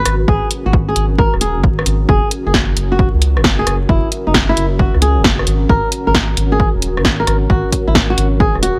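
Late-night and soulful, this short two-step UK garage excerpt moves at 133 BPM with a swung 16th-note feel, cycling through G#sus2 and F# chords. A dark, fingerpicked flamenco guitar carries the melody up front, roughened by vintage 12-bit sampler grit, over a round, soft dub sub bass with tube saturation and a moody, detuned ambient pad that pumps with sidechain under chorus and built-in reverb. A punchy, tape-toned analog drum machine supplies hi-hat, rim click and snare from a small room, joined by a layered electronic kick at 0.3 seconds, all set in a haze of vinyl crackle.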